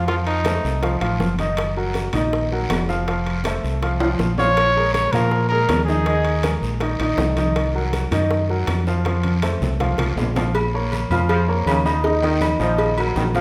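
Bathed in a wet recital-hall reverb, this passionate, danceable salsa excerpt in Bb minor moves at a straight 161 BPM, accompanied by a bright baby grand piano with audible action noise and long sustain, and anchored by a dark, round, punchy fingered electric bass up front. A warm, present trumpet with light vibrato states the melody in short bursts, returning at 4.4 seconds. Beneath it, ringing metal-shell timbales and agogo bells, tight high-tuned bongos and cowbell, soft-handed congas and a raspy guiro drive the groove, with a drum fill at 9.1 seconds and a brilliant, tight trombone section entering on a second line at 11.3 seconds.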